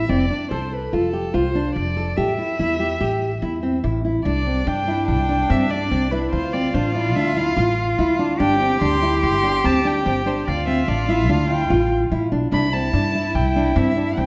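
This contemporary instrumental chamber piece moves in an uneven 5/4 metre with a straight, hypnotic and pensive feel, and is cut from a longer work. A fingerpicked nylon-string guitar sits up front with warm, deep classical arpeggios, while a plucked upright bass on steel strings adds a woody, growly, thumpy low end. Above them, a single violin carries the melody with an intimate, close sound: light vibrato, a soft attack and an airy, sul tasto bow. At 4.2 seconds a bowed cello enters with a second line, rich, biting and nasal, with an earthy, boxy character. The harmony moves from F6 and A7(no3) into Cadd9, Dm7 and Gsus4, and everything sits in the wet reverb of a recital hall.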